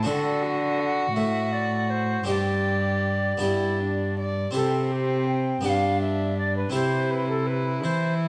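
Classical baroque-style sonata movement in C major, a serene, dance-like passage in 6/8 at 55 BPM counted in dotted quarters, played with rubato and cut from a longer piece. An airy, distant alto recorder carries the melody with vibrato and a tongued chiff over a bowed gut-string violin second line in period style, a brilliant, dry harpsichord accompaniment with octave strings, and a rich, up-front bowed cello bass, one player to each string part. The recording has a moderate recital hall reverb, and the harmony moves from D7 through Gsus4 and G to reach C at 4.6 seconds.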